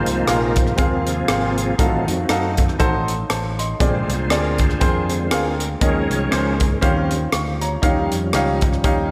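Drenched in lush hall reverb with a big arena sound, this short cut from a longer uptempo gospel piece feels hopeful and reverent, swinging in 4/4 as a bright, reedy tonewheel organ takes the solo through its slow rotary speaker and chorus vibrato, key clicks audible. Up front, a clear baby grand piano with short sustain and slapback echo comps beside a crisp, gritty fusion drum kit of punchy kick, hi-hat and rim click in a pumping small room, while a fingered electric bass adds a warm, amped, punchy low end. Far behind them, a dark, very quiet French horn section holds distant, roomy sustained chords.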